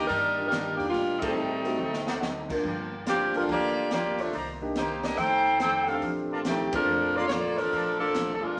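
Joyful and swinging, this short big band excerpt moves at 142 BPM in 4/4 with swung eighths, set in Bb major. The saxophone section carries the melody up front with a smooth top and light vibrato, while the trumpet section, soft in attack and set back in the mix, adds stabs until about 7.9 seconds. A woody pizzicato upright bass and a full-bodied picked jumbo acoustic guitar sit in the background, and a concert grand piano with audible action noise and long sustain fills in accompaniment from 0.4 to 7.3 seconds. The airy, polished drum kit uses kick, snare, hi-hat, ride and crash, with a fill at 1.8 seconds and band accents at 1.2 and 6.7 seconds. The harmony travels from Ebmaj7 through Am7b5, D7b9, Gm7, Cm9 and F13 before settling on Bbmaj7, all in a wet studio reverb.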